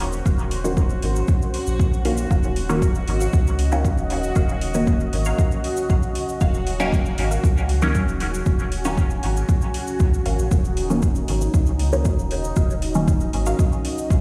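A punchy, overdriven electronic kick drives this nocturnal, hazy dub techno excerpt at 117 BPM in Eb dorian, resting on a single Ebm7 chord, with metallic overdriven hi-hats and a grainy, close cabasa over a round, soft sub bass, two muted, phased chord stabs trailing dub echo, a bubbling resonant stepped-filter texture and a deep, moody pad that all pump together, everything set under a lush hall reverb, stone-room ambience and vinyl crackle.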